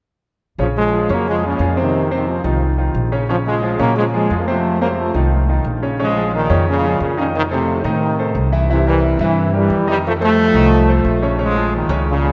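Drenched in the long wash of a vast, echoing cathedral, this fiery, passionate Latin fragment is cut from a longer piece and keeps all three parts playing together from 0.6 seconds to its close at 12.3. A tight, close-miked trombone section carries the melody up front with a brilliant pop-style edge and light vibrato, while a present, polished concert grand piano accompanies with a bright top, deep bass and short sustain. Underneath, an acoustic upright bass played pizzicato on steel strings sits up front with a woody, dark tone as the music moves from its opening section into a second one at 6.0 seconds.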